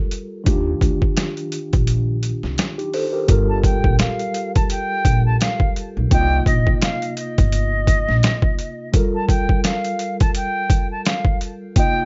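A dark, lightly reverberant mix carries this tough, moody boom-bap hip-hop excerpt at 85 BPM in G minor, where gritty, overdriven sampler-style drums with a thumpy kick sit up front, a woody, growly pizzicato upright bass anchors the low end, a mellow tine electric piano with cassette-tape colour moves through Ebmaj9, Gm9 and Cm7, an airy, distant concert flute with expressive vibrato takes the melody from 3.5 seconds, and the kick drops out between 1.9 and 3.3 seconds.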